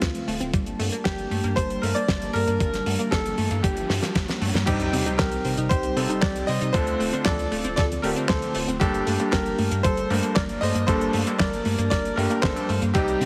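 An up-front, brilliant baby grand piano carries the melody through delay from the first second, over a smooth, slow-attack analog pad with chorus, a detuned sawtooth pluck playing arpeggios in the background, a round, deep analog bass, a dry 70s drum kit with fat snare, handclaps and dark cymbals, and a thumpy electronic kick, setting a nostalgic, danceable italo disco groove at 116 BPM in G minor. A background riser builds from 2.8 seconds, joined by a drum fill at 3.9 seconds, and at 4.7 seconds an impact and sub drop land as a clangy vintage electric grand piano enters with stabs, the chords moving from Dm7 and Gmadd9 to Cm. The whole mix sits in a lush hall reverb with a heavily compressed, radio-like sound.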